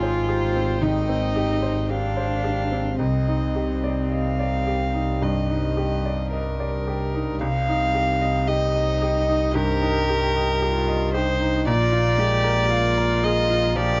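A single bowed violin carries the melody up front, its sul tasto tone soft in attack, pure and floating, with a smooth top that gives this fragment of a longer neoclassical piece for piano and strings its feeling of longing and fragility. Beneath it a lone cello sings a close, intimate second line with light vibrato, and a dark double bass, also bowed sul tasto and placed up front, anchors the low end. A bright baby grand piano supplies the accompaniment across a broad range, its brilliant, natural tone ringing with long sustain. Far behind, a very quiet studio string section holds distant, floating chords. The pulse sits slow and rubato at around 54-58 BPM in 4/4 and C minor, moving from Abmaj7 to Cmadd9 before a second section begins at 7.4 s on Cm7 and turns to Bb7. Close, detailed microphones and little reverb keep the sound dry and intimate, with a faint mains hum audible beneath the ensemble.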